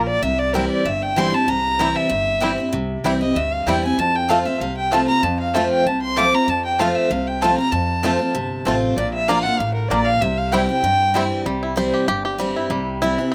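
A dry, outdoor recording with little reverb catches a lively, virtuosic bluegrass passage in C mixolydian at 192 BPM, cut from a longer piece, where a dark, woody fiddle with light vibrato and a smooth top sits up front with slapback echo, carrying the melody as a solo until 11.5 seconds. Beneath it, a bright, full-bodied picked steel-string guitar, also up front with slapback echo, plays alongside a thumpy gut-string upright bass, a mellow mandolin adds stabs from 0.5 seconds, and a twangy, percussive banjo with slapback echo enters at 1.8 seconds. The chords move from C through F and Bb back to C, and the banjo then takes over the solo from 11.5 seconds.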